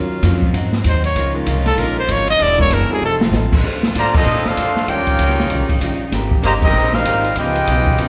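Energetic and swinging, this big band jazz excerpt opens on a natural-sounding concert grand piano that stops at 3.0 s, with a dark, clean hollow-body electric guitar and a tight saxophone section holding sustained chords in the background, and at 0.9 s a clear, vibrato-rich solo trumpet enters on top. A woody, thumpy pizzicato upright bass and an up-front drum kit with dark cymbals and a boomy kick carry the swing, and after a drum fill a mellow trumpet section takes the melody at 4.0 s, joined by a nasal, straight-muted trombone section on a second line and punctuated by band accents. The band sits in a reverberant recital hall with a dulled top end.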